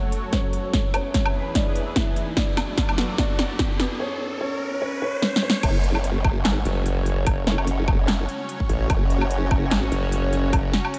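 Two formant-sweep wobble basses drive this aggressive, chaotic excerpt of heavy wobble dubstep, landing at the drop at 5.6 seconds with a detuned, chorused growl, overdriven and compressed up front in F# minor, the second layer joining at 6.7 seconds. Before that, a dark, boxy grand piano carries the melody through analog delay over a lush unison pad whose thick, sawtooth-and-square chords pump against the sidechain with chorus and phaser. An electronic riser runs through the build-up as the drum kit plays fills, moving through F#m, E and D/F# before a brief break in the harmony ahead of the drop on F#5. At 147 BPM in a half-time feel with a light 16th-note swing, a punchy, tape-tinged electronic kick anchors a big-room dance kit of crisp hi-hats, overdriven snare, handclaps, crash cymbal and woodblock. The whole mix floats in a huge ambient reverb, giving the heavy low end a dreamy haze.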